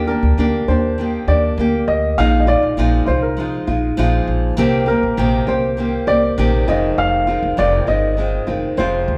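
Tender and wistful, this brief pop fragment at 100 BPM in a straight 4/4 sets a polished upright piano melody with short sustain over fingerpicked nylon-string guitar with a small, fresh-stringed tone and woody pizzicato upright bass, both up front, as the chords move from Ebmaj7 through Bb7sus4 and Cm7 to Fm7 within the moderate reverb of a recital hall.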